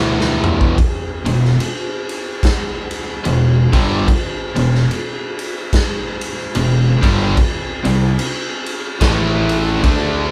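A double-tracked, compressed fuzz guitar drives this hypnotic, sludgy stoner and doom metal riff in E minor at a slow 73 BPM with a swung feel, joined by a bright, biting overdriven guitar and a growly fingered bass thick with fuzz. A raw garage drum kit sits up front, with a punchy kick, ride, snare and toms, a saturated, gritty tone with a rolled-off top and a pumping stone-room sound; it opens with a fill. The band plays live in one room with light reverb, holding on E minor before shifting to C5 at 7.8 seconds and A5 at 9.0 seconds in this short cut from a longer piece.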